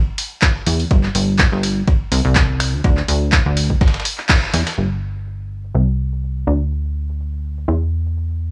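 A 124 BPM groove in 4/4 with a light 54% swing on the sixteenths drives this joyful, feel-good piano house clip, cut from a longer piece. Up front, a punchy analog drum machine carries finger snaps, handclaps, hi-hat and shaker through low-pass filtering, while an electronic kick thumps beneath it until 4.4 seconds. Behind them, a gritty, compressed sampler-style kit adds ride cymbal and a medium-tuned snare, both high-pass filtered, before dropping out at 4.8 seconds as the second section begins. A plucky analog bass built from sawtooth and pulse waves, with a fast attack and a decaying filter pluck, moves between G1 and E2 with funky, evolving character and sidechain pumping, running to the end. A band accent lands at 4.3 seconds, and the dry, hardware-recorded sound stays close and raw with little reverb.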